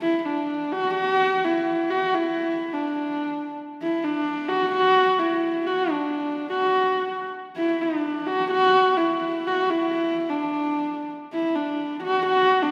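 A wet concert-hall reverb with a long 2.3-second tail surrounds a single horsehead fiddle that sits close and up front, its bowed horsehair strings sounding husky and warm with a smooth top and soft attack. This short Mongolian traditional passage, cut from a longer piece, moves at a galloping 127 BPM in straight 4/4 in a D gong mode and evokes a vast, open feeling. The lone fiddle plays solo for the full 12.7 seconds in a narrow, intimate register, shaded with light vibrato and gliding portamento.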